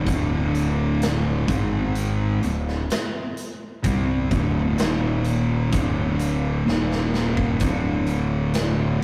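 A growly, overdriven fuzz bass sits up front in this heavy, brooding stoner and doom metal excerpt, its bright, amped tone anchoring the low end. Two thick fuzz guitars play the distorted, picked riff together: one dark and set in the background, the other warm and pushed forward. The riff moves at a slow 64 BPM in straight 4/4, built mostly on D5 and shifting to G#5 and Eb5 before settling back on D5. A big acoustic rock kit with a punchy kick, a medium-tuned snare and hi-hat drives the groove from just after the start, breaks into a fill from 6.7 to 7.6 seconds, and stops at 8.8 seconds. The sound is rough and rehearsal-room raw, with tube saturation and a moderate booth ambience giving the short clip a gritty, close-up weight.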